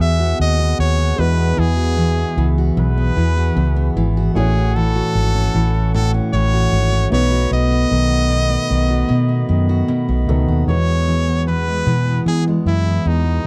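A brilliant, forceful trumpet with vibrato carries the melody in this heartfelt, carefree acoustic pop excerpt, over a full-bodied picked jumbo steel-string guitar with audible finger squeak, a round, dark, foam-muted electric bass up front, a very quiet, woody upright piano, and a clean tonewheel organ with key click holding sustained chords in the background until 10.6 seconds, in a dry, close 1970s-style studio recording.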